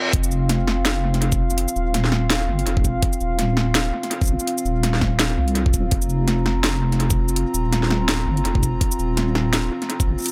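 A dark analog pad of detuned, slow-attack chords with chorus and sidechain pumping opens at 0.0 s, and by 0.1 s this tense, cinematic half-time drum and bass drop at 166 BPM, swung on the sixteenths and cut from a longer piece, settles over an F5 chord with a deep, wobbling square-and-sine bass up front, an overdriven, knocking electronic kick, and a produced kit of cracking snare, bright hats and shaker fed through analog delay in a dry, echo-heavy mix.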